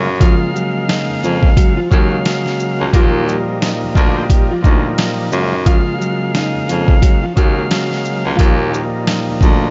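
A boom-bap hip-hop groove in 4/4 rides a swung sixteenth-note feel, carried by a gritty, compressed sampler-style drum kit of thumpy kick, medium-tuned snare, hi-hat and shaker sitting up front from 0.2 seconds. Beneath it, a mellow baritone saxophone takes the bass role with vibrato and a vintage subtone, while an overdriven tonewheel organ, thick and percussive with key click and third-harmonic percussion, fills the accompaniment through cassette-tape coloring and filtering. A fingerpicked nylon-string guitar carries the melody with a deep classical tone, audible finger squeak and tape echo. Briefly, from 2.9 to 4.2 seconds, a very quiet horn section adds tight, clear stabs with octave doubling and light vibrato. The confident, soulful mood rests on lush major-ninth harmony, and the whole short cut, lifted from a longer piece, sits in a light reverb with vinyl crackle and a dusky, rolled-off top end.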